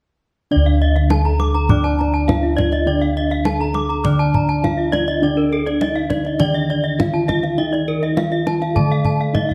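Balinese gamelan in D pelog at 102 BPM in a straight 4/4, a shimmering, hypnotic passage cut from a longer piece. A bronze metallophone carries the melody with padded disc mallets, its mellow, soft ring thickened by paired tuning that produces shimmering beats. Beneath it, a second metallophone struck with a horn mallet plays a dark, smooth accompaniment, while bossed gongs anchor the bass with round, beating tones from padded beaters. Two bright metallophones, also horn-struck and pair-tuned, spin arpeggios high above, the second joining at 0.7 s with an airy edge. The kendang enters at 1.0 s with deep, close strokes from hard hands, and the ensemble sits in a moderate recital hall reverb, with some lossy compression artefacts in the sound.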